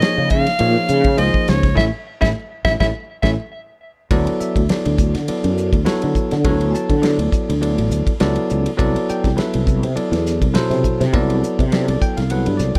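Riding a lightly swung sixteenth-note feel in 4/4, this funky, soaring electric jazz fusion piece opens with a clear, punchy soprano saxophone solo with light vibrato, bathed in plate reverb and tape echo, which drops out at 3.3 s. A bell-like tine electric piano accompanies throughout, while an up-front damped 70s drum kit with dry, dark cymbals and a tight kick plays from the start, joined at 0.2 s by a growly, sustaining fretless bass with ensemble chorus. A band accent from 1.8 s and a drum fill at 3.8 s lead into a new section at 4.1 s. The whole has a dark, warm production with light reverb.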